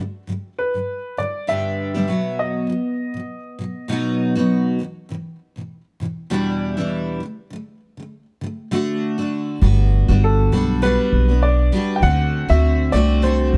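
Carefree and easy-going, this acoustic pop clip, cut from a longer piece, moves with a gentle swing on the sixteenths in 4/4. A picked steel-string acoustic guitar carries the accompaniment for the whole clip, its full-bodied dreadnought tone double-tracked and up front. An upright piano takes the melody from 0.6 seconds, smooth and vintage with long sustain and a plate reverb, then drops out and returns at 10.2 seconds. Upright bass arrives at 9.6 seconds, pizzicato and thumpy with a woody character, sitting prominently in the mix as the harmony opens onto Gmaj7 and D7. The production is dark and warm with light reverb, giving the whole clip a relaxed, easy-going glow.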